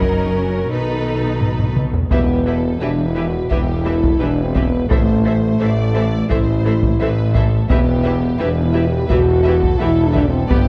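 Cinematic, epic orchestral film score with a heroic mood, this excerpt sets a lush violin section's vibrato melody over a distant, woody second violin line, smooth bowed violas, and mellow, tight French horn chords. Dark cellos and a rich, focused double bass section anchor the low end, while distant taiko drums struck with hard sticks resound as if in a large room, adding a fill from 1.4 to 2.1 seconds. At 2.1 seconds a clear, vintage-toned tuba joins in the background as the harmony settles into E minor, all bathed in a moderate scoring-stage reverb and a dark production.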